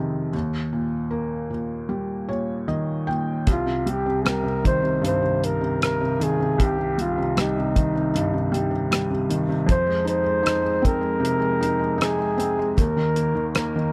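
A felt-muted upright piano opens alone, soft and intimate with audible action noise, before a breathy, mellow flugelhorn enters at 3.5 seconds with light vibrato and jazz-style scooped notes alongside a cloth-damped, thuddy drum kit of hi-hat, tight kick and rim click that sits dark, dry and up front, giving this melancholic, reflective acoustic folk-pop ballad at 77 BPM a close, detailed sound with little reverb as it moves from Eb through Cm and Fm7 in a passage cut from a longer piece.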